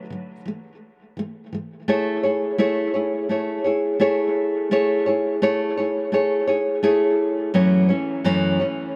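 Heartfelt and sunny, this short pop excerpt moves at 85 BPM in 4/4 with a light sixteenth-note swing, set in A major. A lone nylon-string guitar carries the whole piece, fingerpicked in a classical manner with a dark acoustic tone that sits up front in the mix. Dub echo trails its playing, and a moderate spring reverb adds a gentle sheen to the echo-heavy sound. The harmony opens on Esus4 before settling onto Amaj7 at 1.9 seconds, where a new section begins, then turns to F#m7 at 7.5 seconds. Cut from a longer piece, the passage feels like a heartfelt, sunny moment caught mid-thought.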